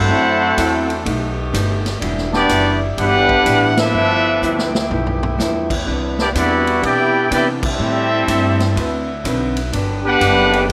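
Joyful and swinging, this big band swing excerpt in G major at 125 BPM puts a clear, vintage trumpet section up front on the melody over a bright trombone section's second line, distant saxophone section chords with a soft attack, woody pizzicato upright bass, a dark, clean hollow-body jazz guitar in the background and a drum kit with a punchy kick, with band accents at 3.7 and 7.6 seconds and a drum fill at 4.4 seconds.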